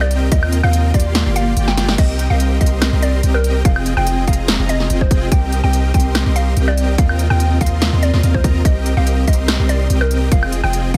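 A huge, thick supersaw riff, detuned and heavily compressed with vibrato, drives this emotional, lush future bass drop, pumping with the sidechain in a half-time feel with a light swing. Beneath it, a deep, sine-toned 808-style bass holds long, decaying notes up front, also ducking with the sidechain. A woody, round mallet-like FM pluck carries the melody, its vintage, warbling character thickened by chorus and trailed by delay. A big-room dance kit adds a punchy snare, crisp hats, crash and woodblock, while an overdriven, hard-clipped electronic kick enters at 0.3 seconds and drops out briefly at 1.6 seconds as a drum fill leads into the next drop section at 2.0 seconds. Light reverb frames the mix as the harmony moves through chords such as Eb69, Cm7 and Fm9 in this section cut from a longer piece.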